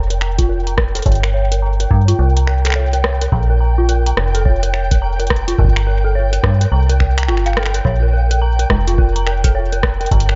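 A metallic, up-front FM bass with fast, decaying notes anchors this melancholic, glitchy IDM excerpt at 106 BPM in 4/4, swung on the 16ths in Bb melodic minor and moving between Bb5 and Gm chords. A dark, detuned synth bell plays eerie, inharmonic arpeggios through chorus, 12-bit sampler grit and tape echo under a filter sweep, while a flickering, granular texture hovers on a high G. A deep analog kick enters at 0.4 s beneath an electro drum machine of congas, finger snaps, rim clicks and hi-hat, the whole set in an echo-heavy mix with light reverb and a rolled-off top end.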